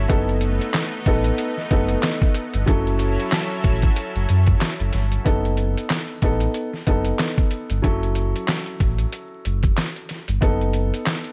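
A gritty, pitched-down sampler drum kit sits up front in this moody, dark boom-bap hip-hop excerpt at 93 BPM in 4/4 with swung 16ths, its thumpy kick, medium-tuned snare, handclaps and hi-hat riding over a deep sine sub bass with octave that plays until 10.9 s. A woody, boxy upright piano with cassette-tape coloring carries the chords between B7/F# and F#m7, while a lush, detuned sawtooth unison pad with chorus holds sustained chords only until 5.2 s. The sound is dry, dusted with vinyl crackle.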